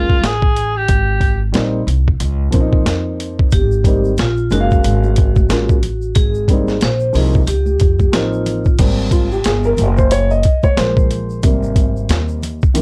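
Smooth, cool jazz-hop at 91 BPM in Ab major, where a gritty, pitched-down boom bap kit with a thumpy kick and high-tuned snare sits up front beside woody pizzicato upright bass and a dark, boxy grand piano, while a breathy, whispered tenor saxophone phrase ends by 1.4 seconds, a metallic, ringing vibraphone with hard mallets joins from 3.5 to 8.8 seconds over a very quiet egg shaker and congas, and the piano takes a solo from 8.8 seconds, all colored by worn, warbling cassette tape with little reverb.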